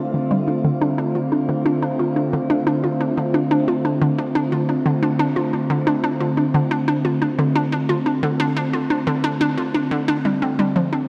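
Cosmic and hypnotic, this short excerpt of ambient, sequencer-driven space music moves at 89 BPM in a straight 4/4, opening on a D minor seventh chord. A hollow, bouncy square-wave pluck carries the riff from the opening through 11.0 seconds, its detuned tone edged with a noise layer, a fast attack and a short decay, and treated with chorus, analog delay and shimmer reverb. Alongside it, a sweeping, resonant pad holds sustained chords for the full 11.1 seconds, its evolving blend of sawtooth and sine waves rising through a slow attack and a filter swell, coloured by chorus and shimmer reverb. A filter sweep on the arpeggiated synth runs across the whole passage. Both parts sit up front in an echo-heavy mix bathed in a long plate reverb, giving the music a drifting, weightless sense of space.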